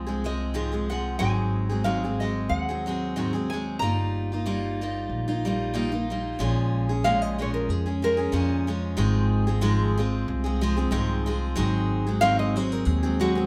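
A bright, full-bodied nylon-string guitar carries the melody from 0.3 s, fingerpicked on fresh strings with audible finger squeak, and takes a solo from 6.4 s over chords moving from Bbm7 through Fm7/Ab to Ab7. This reflective, intimate acoustic folk piece in Bb minor moves at 93 BPM in 4/4 with a light swing, supported by an up-front picked steel-string acoustic guitar with a warm auditorium tone and a woody, growly pizzicato upright bass. The small band plays live together in one room, wrapped in a wet large-studio reverb, and the passage is cut from a longer piece.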